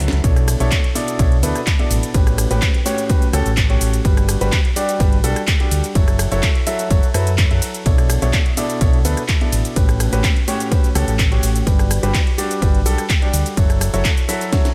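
Piano house in B minor at 126 BPM, this soulful, energetic excerpt opens on a drum fill beneath a polished grand piano riff with long sustain, tape echo and sidechain pumping, then drops at 0.2 seconds as the riff continues over a Bm11, A13, Gmaj7, F#m7 cycle, while a round, dark fingered electric bass pumps beneath it, a punchy electronic kick drives the pulse, and a layered house kit of cracking snare, metallic hats, handclaps, ride cymbal, rim click and shaker carries the groove to a final fill at 14.5 seconds, all set in light digital ambience.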